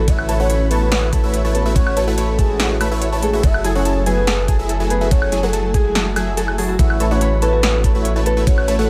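A dry mix opens this euphoric, bright future bass excerpt at 143 BPM in a half-time feel in A major, where a round, triangle-and-sine synth lead with a sub octave carries the melody through chorus, phaser, digital delay and sidechain pumping, over a deep, mellow 808-style bass with tube saturation, a punchy detuned supersaw stab riff, ringing fingerpicked Celtic harp arpeggios with dub echo in the background, a very quiet, ethereal granular pad holding sustained chords, a layered big-room kit with a punchy snare, crisp hats, ride and woodblock, and a knocking electronic kick that drops out from 6.0 to 6.8 seconds as the chords move from A6 to F#m9 and back.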